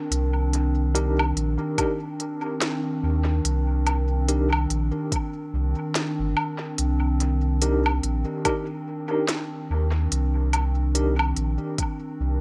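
A slow 72 BPM pulse in 4/4 carries a gentle swing on the sixteenths, set by an up-front electronic kit of crisp hi-hats, a woody snare and woodblock soaked in dub echo, with a soft electronic kick joining at 1.8 seconds. This hazy, spacious ambient dub in C minor rests on a single Cm9 chord throughout this short cut from a longer piece. A warbling, lo-fi pad opens at 0.0 seconds with slow-attack sustained chords, its dark square and triangle tones thickened by chorus and its own reverb into a nostalgic glow. Beneath it, a deep, round sine sub bass with a fast attack holds mellow, sustained notes, colored by tube saturation. From 0.9 seconds, a worn, slightly out-of-tune tine electric piano plays clean stabs through a combo amp, pulsing with medium tremolo and trailing dub echo. Both drum parts sound re-recorded in a small room, and a light reverb lends the mix a little air.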